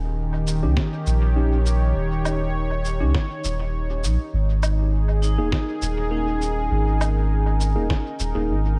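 A deep, round sub bass sits up front through this hazy, meditative ambient dub excerpt, under a smooth, detuned analog pad with chorus moving from D#7 to G#sus2. A muffled, thumpy overdriven kick and a fat, pitched-down snare with cabasa and woodblock soaked in dub echo arrive within the first second, alongside worn, slightly out-of-tune electric piano stabs. Metallic vibraphone arpeggios ring in the background in a boxy small room, sounding briefly at the start and returning from 5.2 s, all bathed in an echo-heavy, tape-saturated mix.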